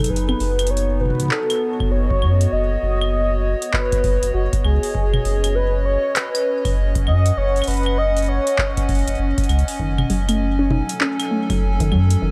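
IDM at 99 BPM with a swung 4/4 feel, this melancholic, cerebral excerpt sets a velvety, chorused synth lead over hollow, flute-like pad chords, a round sine sub bass, a tape-warm electronic kick and a booming analog drum machine of claves, handclaps, metallic hats and toms, until the lead stops at 9.2 seconds and a warbling, lo-fi pluck with chorus and delay takes up arpeggios from 9.8 seconds as the harmony moves from G#m7/F# to F#m6, all set in a dark production with light reverb and digital ambience.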